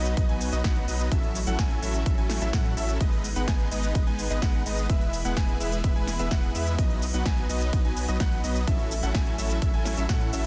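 A dense, heavily limited modern master with little reverb carries this euphoric, triumphant festival progressive house excerpt at 127 BPM in straight 4/4, anchored by a punchy, tape-toned electronic kick up front and a layered big-room kit of snare, crisp hi-hats, ride and shaker, re-recorded in a large room. Huge, detuned sawtooth supersaw chords carry the riff with dub echo over a deep, thick, saturated sub bass, moving through B, F#m7/A, G#m and E. In the background, a lush, chorused unison pad with a slow attack holds sustained chords while a brilliant grand piano plays high arpeggios through dub echo, with the pad, piano, supersaw and bass all pumping from sidechain.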